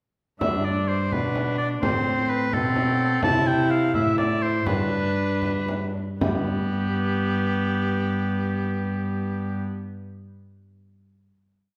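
A stately, courtly renaissance-style consort dance in G major and 6/8, moving at about 76-86 BPM in dotted quarters and slowing from 2.5 to 6.2 seconds before settling on a final held chord at 6.2 seconds. A clear, close-miked oboe with vibrato sings the melody up front, while a warm gut-string viola bows sustained chords in the rhythm of the tune and a dark, reedy cello, also up front, holds a sustained bass with passing notes. A deep, distant frame drum plays a dance rhythm until 6.5 seconds, all set in a wet recital-hall reverb of a church or concert hall.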